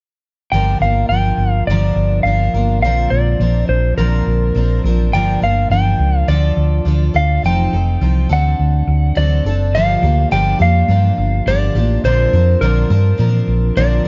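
Folk rock and heartland rock in G minor at 104 BPM, this reflective, wistful passage moves through Gm7, Bbadd9, Dm, F7 and D7 in a straight 4/4, with an up-front, slightly broken-up electric slide guitar carrying the compressed melody high above. Beneath it, a picked twelve-string acoustic guitar adds a full-bodied, shimmering, octave-doubled accompaniment. A round, amped hollow-body short-scale bass sits loudest and up front. The dark, warm production is close and dry, and the phrase shifts into a second section at 9.8 seconds before the clip ends at 14.1 seconds.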